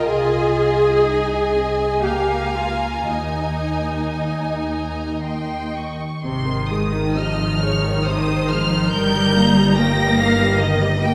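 Heard from further back in a wet recital hall, this tender, lyrical fragment of a slow romantic movement for string orchestra sways in rubato triple time as a rich, lush violin section carries the melody high above a clear, more distant second violin line, a warm, even viola accompaniment, a focused cello bass and an up-front, smooth double bass section, with every section bowed with vibrato.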